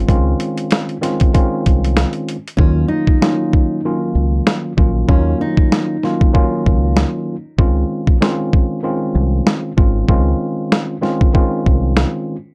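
A dry, gritty hardware sound with light reverb frames this moody boom-bap hip-hop excerpt at 96 BPM in a swung 4/4, moving from Dbmaj7 to Ebm7 and back. Up front, a compressed, pitched-down sampler-style kit pairs a thumpy kick with a high-tuned snare. A worn, slightly out-of-tune tine electric piano, lightly overdriven through its built-in speakers, carries the chords, while a dark, round, punchy fingered electric bass sits beneath. At 2.6 seconds the hi-hats drop out and a fingerpicked nylon-string guitar with analog delay plays a brief, deep classical melody until 6.5 seconds.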